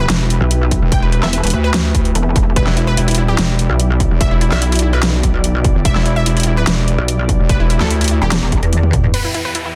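Dense, heavily limited and nearly dry, this heavy, aggressive half-time wobble dubstep drop at 146 BPM in E minor, cut from a longer piece, sets a square-wave wobble bass and a detuned, pulsing pluck wobble bass, both saturated and up front, against a distorted electronic kick and a tape-toned dubstep kit with huge snare and bright hats, while a lush sawtooth unison pluck carries the melody through cassette tape and tape echo over a dark, bowed chamber string section pumping in the background, with a drum fill arriving at 8.7 seconds and an electronic downlifter closing from 9.1 seconds.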